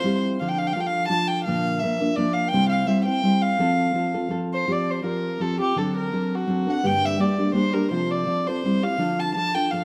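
A moderate concert-hall reverb surrounds this short cut from a longer mariachi-style Mexican folk piece, a festive, proud tune in 3/4 and F major at 168 BPM with a light swing on the eighth notes. A single bowed violin carries the melody with a pure, floating, softly attacked tone, while a dark, fingerpicked classical nylon-string guitar accompanies it up front, its finger squeaks audible. The same phrase is heard twice, the second pass starting at 4.7 seconds and moving through a D7 to G minor before the piece is cut off at 9.8 seconds.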